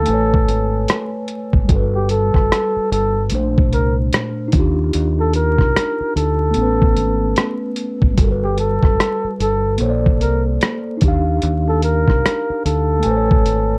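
A breathy flugelhorn carries the melody up front in a mellow jazz style, with light vibrato and scooped notes. This nostalgic lo-fi hip hop excerpt moves at 74 BPM in 4/4 with a swung sixteenth-note feel. Beneath the horn, a clean tine electric piano plays accompaniment through its built-in speakers, colored by cassette tape. A dark, round fingered electric bass sits up front with a punchy, direct-amped tone. A compressed, pitched-down sampler-style boom bap kit of thumpy kick, hi-hat and rim click sounds gritty and tape-warm as it cycles with the band through Amaj9, Gmaj9, Bbmaj9 and Ebmaj9 in a modest room, while worn, warbling old tape with vinyl crackle and pitch drift gives the recording its aged character.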